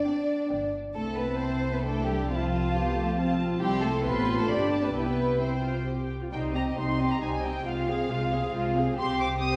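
A dark, woody violin section with vibrato carries the high melody in this cheerful, graceful classical-period movement for string orchestra, a quick 3/4 fragment at 135 BPM. Beneath it sit an intimate, up-front second violin line, pure, floating violas, close-sounding cellos and a rich, smooth-topped double bass section entering at 0.5 s, all bowed sul tasto. The music shifts from C major to C minor at 6.3 s, set in a wet recital hall and heard from further back in the room.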